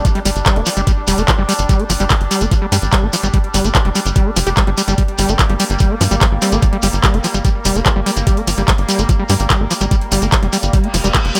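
Psychedelic and driving, this excerpt of psychedelic trance runs at 146 BPM in a straight 4/4, centred on G phrygian over a G5 chord. A knocking, tape-warm electronic kick sits up front alongside a techno kit of handclaps and metallic hi-hats, with a grainy, saturated shekere entering at 0.1 seconds. Beneath them, a tight, nasal sequencer bass pushes the low end from 0.3 seconds, while an overdriven acid bass carries the squelchy, gritty riff through distortion, digital delay and sidechain pumping. A bubbling stepped-filter texture holds sustained chords, its bright, resonant sawtooth tone stepping randomly through chorus and built-in reverb as it pumps with sidechain. A very quiet, juicy blip pluck with a moving notch and phaser flickers briefly as a second line near the start and again around 6.4 seconds. An electronic reverse cymbal rises in at 10.9 seconds to close the passage, all set in a light reverb.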